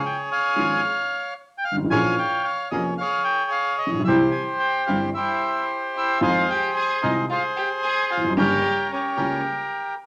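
A melancholic, passionate tango excerpt in 4/4 with a rubato feel, led by an up-front bandoneon melody whose reedy, mid-forward tone sits over a dark, woody upright piano accompaniment that is boxy and mellow. A second bandoneon adds background stabs, and a single bowed violin enters at 5.1 seconds with a second line full of vibrato and portamento, expressive with a smooth top. The ensemble sits in a wet club reverb, and the chords move from Db through Bbm7, C and Fm7 to Gdim.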